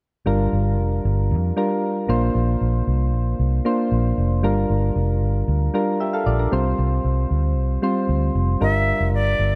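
A dark, foam-muted fingered electric bass sits up front with a round, punchy tone, anchoring this nostalgic, dramatic 1980s-style pop excerpt at 115 BPM in G dorian. Soft electric-piano-like synth keys with a mellow, warbling chorus shimmer move through Gm7, Bbadd9 and Csus4 in a light small-room reverb. At 8.6 s a silver concert flute enters with a pure, expressive tone and vibrato as the harmony returns to Gm7.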